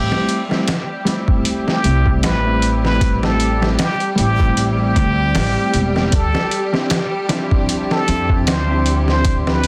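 Melancholic and cinematic, this lightly swung trip hop passage is cut from a longer piece. A plunger-muted trumpet carries the melody in a brilliant, punchy jazz voice with wah-wah colour and vibrato, its forceful solo line trailed by tape echo. Beneath it, a dark, clean electric guitar plays fingered accompaniment through harmonic tremolo and tape echo, while a lush bowed string section holds close, focused chords roughened by vintage 12-bit sampler grit. The woody pizzicato upright bass sits prominently with gut-string depth thickened by tube saturation, and a gritty, pitched-down sampler-style drum kit enters at 0.1 s, placing a thumpy kick, medium-tuned snare and hi-hat up front in a small room reverb. The harmony rests on Am7 before moving to Dm9 at 6.1 s, inside a dense, heavily limited master.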